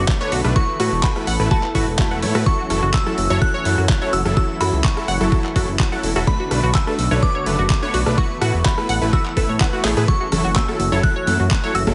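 Dreamy and bittersweet, this progressive house excerpt in F# minor moves at 126 BPM in a straight 4/4, cycling through Bm7, Asus2 and F#m7 as a glassy, crystalline FM bell carries the melody with chorus, tremolo and digital delay over a smooth, warbling analog pad and tight, driving sequenced arpeggios with tape echo. A fat, detuned sawtooth bass and an overdriven, knocking kick sit up front, joined by punchy supersaw stabs and a pop kit of handclaps, hi-hat and rim click, with pumping sidechain breathing through the bass, pad, arpeggios, stabs and kit cymbals and hats. A drum fill lands at 9.8 seconds and hard-hand congas slip in at 10.3 seconds, all framed by light reverb and a heavily compressed, radio-like sound that trims the top end.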